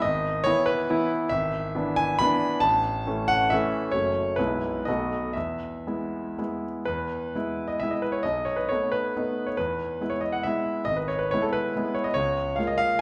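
A clear, intimate concert grand piano opens this short passage from a longer romantic classical piece alone, playing a proud, rustic triple-time dance in E major with dotted rhythms and free rubato between 111 and 154 BPM, its deep bass, audible action noise and long sustain set up front yet heard from further back in a wet recital hall, as the opening phrase returns at 6.9 seconds.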